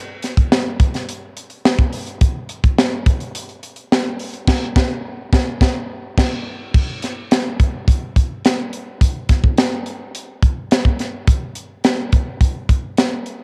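A crisp acoustic fusion drum kit carries this short pop excerpt on its own, entering at 0.2 seconds with crash cymbal, hi-hat, kick drum and snare drum. The mood is urban and upbeat, moving at 106 BPM in a straight 4/4 feel. The kit sits up front with an airy, polished studio-room character, its high-tuned snare cutting through and its kick staying tight. A cassette tape treatment colours the drums, fitting the home recording on cassette and its light reverb. An accented passage arrives from 4.5 seconds, leading into a new section that begins at 6.7 seconds and runs to the end of the cut.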